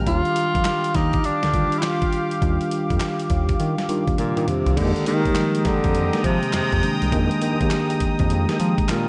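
R&B in a new jack swing vein at 102 BPM with a swung sixteenth feel, this confident, slick excerpt sets a breathy, intimate tenor saxophone up front over a gritty, compressed sampler-style drum kit with a thumpy kick, a smooth sawtooth-and-square synth bass, a mellow tine electric piano and a bright, detuned pad with a filter swell, moving from Ebmaj9 to Fm11 at 4.8 s, where a clear tonewheel organ with key click and fast rotary speaker adds background stabs following a drum fill at 4.2 s.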